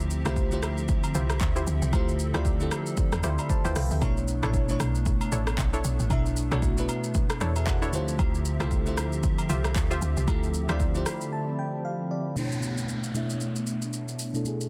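Amapiano with a hypnotic, deep mood, cut from a longer piece and riding a swung sixteenth-note feel over chords that move between Dm11 and Bm11. A bell-like FM electric piano sits up front with a sparkling, chorused tone, while a hollow, flute-like pad holds sustained chords underneath, warbling and vintage in character, with ensemble chorus and sidechain pumping. The woody log drum bass drives the low end until 11.0 seconds, and a punchy deep house kit of kick drum, handclaps, rim click, hi-hat and shaker keeps the groove going, with agogo bells tucked in the background. A glassy, crystalline wavetable pluck adds chorused, delayed stabs through most of the drop, and the electric piano plays a fill as the music breaks down. From 12.4 seconds a downlifter and a filter sweep carry the close, all within a dry, dense and heavily limited modern mix.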